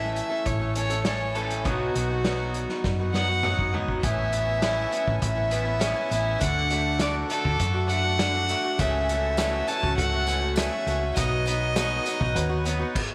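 A moderate echo-chamber reverb surrounds this nostalgic folk rock and heartland rock excerpt at 101 BPM, where an up-front, rich bowed violin sings the melody over boxy picked swing-style acoustic guitar, a twangy lo-fi electric guitar riff with lush chorus in the background, a round hollow-body fingered bass and a vintage drum kit with dark cymbals and a punchy kick that plays a fill from 2.8 to 4.0 seconds, before a reedy, very quiet accordion joins at 4.0 seconds and a woody upright piano and jingly tambourine enter at 8.8 seconds.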